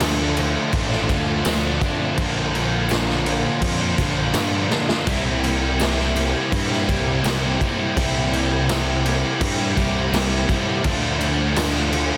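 Shoegaze and dream pop rock in C mixolydian at 83 BPM, this blissful, hazy excerpt rolls through Dm7, Bb and C7 in a straight 4/4, with a raw garage drum kit sitting up front, its boomy kick, gritty saturation and rolled-off top carrying a drum fill at 4.7 seconds. A fuzz-soaked picked bass anchors the low end beneath a stack of guitar riffs: a bright, double-tracked distorted electric and a hollow-bodied overdriven semi-hollow with reverse reverb in the background, and a very quiet crunchy overdriven guitar. A faint, shimmering octave-doubled twelve-string acoustic picks arpeggios while a jingly, close and dry tambourine lingers behind, all in a small room under a dense, heavily limited modern master.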